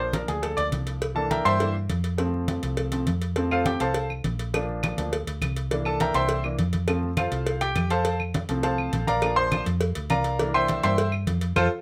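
A moderate studio ambience frames this festive, danceable salsa passage in F major at 205 BPM, cut from a longer piece, where a clear, polished grand piano sits up front, its action noise audible and its long sustain carrying a solo across a cycling Bb, C7, F progression. A dark, round hollow-body electric bass, amped and up front, holds the low end, while soft-handed, thick-skinned congas stay damped in the background beside a low-tuned, dry cowbell. Woody claves join at 3.5 seconds, and the passage closes with a drum fill and band accent at 11.6 seconds.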